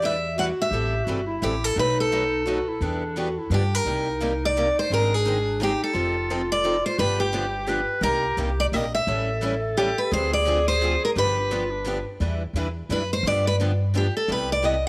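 A bright, full-bodied steel-string acoustic guitar carries the melody up front in this bittersweet, virtuosic stretch of jazz manouche, cut from a longer piece, picked at a brisk 172 BPM in 3/4 with a swung feel, its finger squeaks audible against an auditorium-like body. A breathy clarinet with vibrato plays a second line beneath it until about 12.1 seconds, its tone warm and present in a jazz style. Two boxy, parlour-sized steel-string guitars pick the accompaniment, one sitting further back with a fresh-string sparkle. A woody, thumpy upright bass, plucked and up front, anchors the low end. The music opens in E minor, shifts to C minor at 3.9 seconds through a chain of seventh chords, and at 12.2 seconds the lead guitar takes a solo, all set in a light studio reverb.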